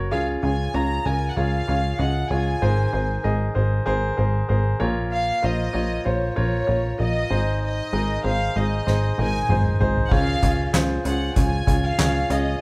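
Piano-driven pop in Db major at 96 BPM, hopeful and warm, where a clear, polished concert grand and a punchy, plucky analog bass carry the chords from the start while an intimate chamber violin section sings the melody with light vibrato and a smooth top, until a soft-mallet drum kit with a fat snare and dark cymbals enters with a fill at 8.9 seconds that leads into a new section at 10.1 seconds, all set in a moderate large-room reverb, as if the band were playing live together, in this short cut from a longer piece.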